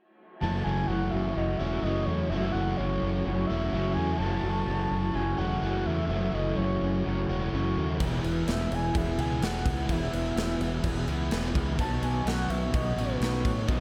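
This hazy, blissful shoegaze and dream pop excerpt opens at 0.4 s with a breathy, flute-like synth lead carrying the melody, its soft, sustained tone shimmering with chorus, tremolo, vibrato and analog delay. Beneath it, a slightly broken-up guitar through a small old amp picks lo-fi arpeggios bathed in lush chorus and delay, while a second small-amp guitar plays a compressed riff in the background, smeared by reverse reverb. A double-tracked, crunchy overdriven guitar and a dark, thick fuzz guitar with distortion and lush chorus fill out the riffs behind them, and an up-front, growling fingered bass with overdrive anchors the low end. At 8.0 s a big rock drum kit arrives up front with a punchy kick, medium-tuned snare and bright crash cymbals, driving the straight 4/4 pulse at 127 BPM. The harmony moves from F#m7 to E and then Badd9, and the whole dreamy mix is soaked in plate reverb over a small room ambience.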